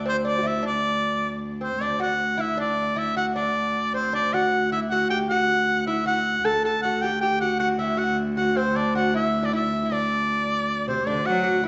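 A delicate, fingerpicked lute on gut double strings and a pure, ringing viola da gamba drone open this festive, rustic medieval dance in three, joined almost at once by an edgy shawm that carries the folk-style melody up front with vibrato and a soft attack. The bowed gamba floats airily beneath, and at 10.9 seconds a second, close-sounding gamba adds a low line of its own. Cut from a longer piece, it sits in a wet recital hall reverb with a dark, rolled-off top end.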